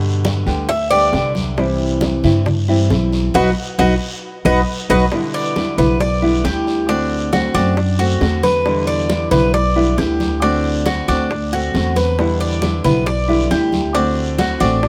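Sultry and danceable, this excerpt from a longer Cuban son and guajira piece moves at 136 BPM in a straight 4/4 in E minor. A bright, metallic Cuban tres with double strings sits up front playing picked arpeggios from 0.7 seconds, carrying a solo through the opening stretch while the band hits accents from 3.3 to 5.1 seconds. Beneath it, a dark, thumpy upright bass plucks with steel-string bite, and a small-sounding nylon-string guitar fingerpicks a cozy, worn accompaniment over old strings. Congas with a thick skin and round, low-tuned bongos, both struck with hard hands, sit in the background, while a raspy guiro sounds distant in a large room. After the opening run of G, C and B, the second section from 5.1 seconds rocks between Em7 and D7 under light reverb.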